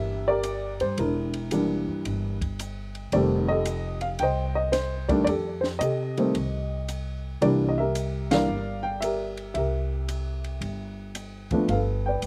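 Relaxed and warm, this swung jazz piano trio snippet at 112 BPM in C mixolydian sets a woody, short-sustained upright piano with slapback echo on the melody over a thumpy, gut-strung pizzicato upright bass, both up front, while a dark, smooth cocktail drum kit with a punchy kick, high-tuned snare, hi-hat and ride enters at 0.4 seconds; the trio hits a band accent at 8.2 seconds over chords moving from a rootless C9 to F9 and back before landing on Gadd9, in a dry outdoor sound with little reverb.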